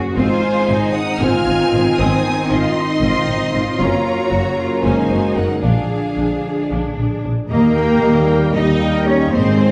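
Up front, the rich double bass section anchors this majestic, triumphant orchestral film-score passage, its bowed low notes carrying light vibrato beneath a 7/8 pulse at 231 BPM in eighths, set in Ab mixolydian. The viola and cello sections open at 0.0 s together with the trombone section, the violas lush and in the background while the cellos give a focused, smooth-topped bass line. From 0.2 s a clear, close violin section carries the melody high above, with a second violin section adding a vibrato-laden counterline and mellow French horns holding sustained chords behind the strings. The harmony moves from Ab through Gb and Bb7 before settling on Eb at 7.5 s, where a distant, roomy trumpet section enters with stabs to mark a new section. The whole ensemble sits in a recital hall with a wet reverb, heard from further back in the room with a softened top end, and the passage is cut from a longer piece.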